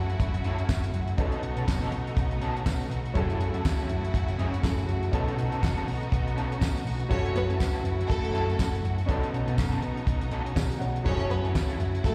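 A live-gig sound, heard through the venue's PA with a recital-hall reverb, wraps this sultry, glamorous disco excerpt at 122 BPM in F# dorian, its sixteenths carrying a light swing as the harmony alternates between F#m7 and B9. Up front, a damped 70s kit gives a fat snare, tight kick, handclaps and hi-hat with a dark, rolled-off top, while a picked electric bass through an envelope filter sounds round, punchy and amped. A natural baby grand piano with slapback echo and a rich, distant studio string section holding sustained chords fill out the texture, and a twangy, slightly broken-up electric guitar sits in the background with ensemble chorus and slapback echo. A jingly tambourine enters at 0.7 s, tucked back in a live room. At 7.1 s a close, lush symphonic string section joins with a second line, its bowed vibrato and soft attack carried on tape and slapback echo.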